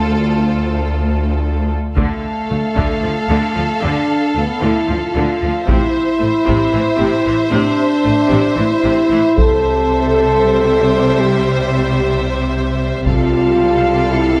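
Driving along in a straight 7/8 at 227 BPM in D minor, this heroic, relentless cinematic film-score excerpt opens with a two-second build-up in lush, vibrato-rich strings, distant violins carrying the melody over a second violin line, background violas, expressive warm cellos and smooth-topped double basses, until at 2.0 seconds mellow, up-front French horns enter with sustained chords and a hard-stick taiko ensemble joins in as the harmony moves from Dm through Am and C, all set in a moderate scoring-stage reverb.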